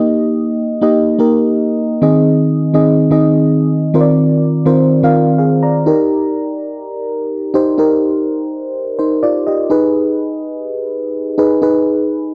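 Pop with a nostalgic, uplifting mood, carried entirely by a mellow FM electric piano playing alone from 0.0 to 12.3 seconds in a lightly swung 4/4. Its soft, round tone sits dark and up front, with a fast attack that decays, a noise layer and a chorus shimmer, as the chords settle over a held Eb before turning to Abm at 9.7 seconds. The dry, close sound of a 1970s-style studio with light reverb frames this short excerpt of a longer piece.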